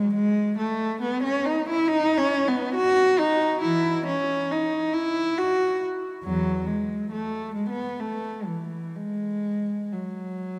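A classical, baroque-style suite movement for unaccompanied cello, this brief excerpt cut from a longer piece feels radiant and flowing in its triple metre. A single bowed cello carries the whole passage from 0.0 to 10.6 seconds, its dark tone sitting close and up front. The player shapes each phrase with expressive vibrato and gliding portamento, while the uneven beats and rubato give the line a free, breathing pulse. The melody ranges from E2 up to F#4, drawing on both the instrument's deep register and its singing upper voice. A wet church reverb with a long 3.2-second decay surrounds the playing in a resonant, spacious halo.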